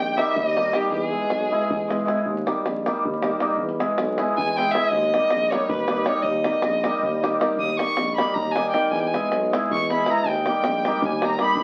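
A rich, vibrato-laden bowed violin opens up front over shimmering, ringing hammered dulcimer and a soft-attacked, warm tuba bass, with a tight, dry davul joining at 0.2 seconds to drive this fiery, restless Balkan wedding-band folk piece in 7/8. The violin drops out briefly and returns at 4.4 seconds with a smooth, even solo line, while the chords shift back and forth between Eb and E. A studio reverb and the crackle of a very old 78 rpm record wrap the sound in an aged haze, and the piece is cut from a longer performance.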